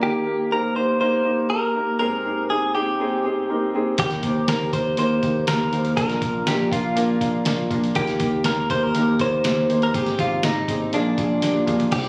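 A phone-in-the-room recording with light studio reverb and compression frames this warm, anthemic piano-driven pop excerpt in Eb major at 121 BPM, where a woody, up-front upright piano and a clean, subtly chorused electric guitar melody open together before a picked electric bass and a muffled, pitched-down sampler-style drum kit with a thumpy kick and fat snare join at 4.0 seconds, moving through Eb, Abmaj7 and Bb to a drum fill at 11.4 seconds.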